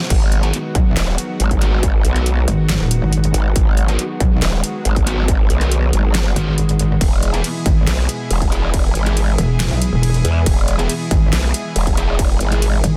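Heavy wobble dubstep in G# minor at 139 BPM with a half-time feel, this menacing, aggressive cut from a longer piece moves from G#m7 to E at 7.0 seconds. Two up-front basses dominate: a growling, formant-filtered growl bass, saturated with chorus and overdrive, and a metallic FM wobble bass that enters at 0.8 seconds and reaches down to D#1. Beneath them, a distorted, tape-warm electronic kick drives the beat, while an overdriven dubstep kit adds a deep snare, handclaps, hi-hat and crash cymbal with a small-room character. A lush, detuned unison pad holds bright sustained chords further back, pumping against the sidechain with warbling chorus. Sitting lowest in the mix, a double-tracked fuzz guitar punches picked stabs through distortion and delay. The sound is dry and dense, with a heavily limited modern master.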